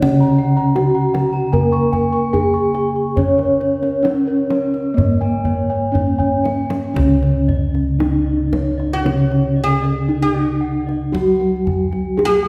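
Ceremonial and serene, this Javanese gamelan passage in C# pelog barang moves in a straight 4/4 at 57-83 BPM. A mellow bronze metallophone carries the melody over a lower metallophone accompaniment, with soft, round bossed gongs holding the bass, ringing metallophone and beating gong arpeggios sounding above, and a deep kendang underneath. The gong arpeggios fall away at 6.7 s during a kendang fill from 6.2 s, and at 8.9 s a woody, plectrum-plucked fretless oud with double strings enters up front with a second line, all set back in a wet, spacious stage reverb.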